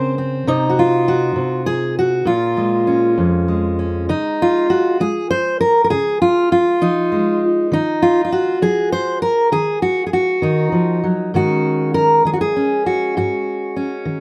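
Folk piece for solo fingerpicked steel-string acoustic guitar in Db major, unfolding in a relaxed, rubato 6/8 at 66 BPM with a pastoral, peaceful mood. The dreadnought guitar sits up front with a warm tone and light reverb, ranging from F2 to C5 as it moves from an opening free of chords through Bbm7 to a second passage at 4.1 seconds built on Dbadd9, Ebm and Ab7sus4. This short extract is cut from a longer piece and ends on the suspended chord.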